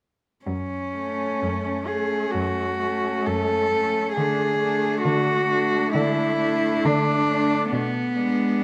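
The rhythm moves with a free, rubato pulse in 4/4, giving this short classical excerpt for cello ensemble a lyrical, breathing quality that feels melancholic and elegiac. The melody cello sits close and up front: one player bowing sul tasto with a soft attack, a warm, airy tone and light vibrato that makes it sound intimate. Beneath it, a distant bass cello with portamento and expressive vibrato anchors the low register from 0.5 s. A similarly distant accompanying cello joins at 0.9 s in a narrow middle range. A rich, focused second line with a smooth top and vibrato enters at 1.0 s, sitting above the accompaniment. The harmony passes from F# minor to D and arrives on G#dim/B near the close, set in a moderate scoring-stage reverb.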